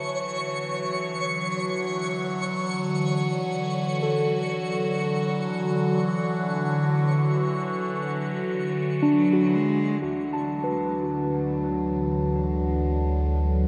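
Peaceful and warm, this ambient passage from a longer piece drifts in a vast, echoing space: a bright, detuned wavetable pad fades in with phased sustained chords, muted felt-like synth keys spin intimate arpeggios through chorus and tape echo, a twinkling granular shimmer sparkles above until it fades out by 10.1 s, a rich bowed cello enters at 9.1 s and fades in with an expressive vibrato melody, and a round, deep analog bass with tube saturation arrives at 10.0 s as the pad takes on a filter sweep.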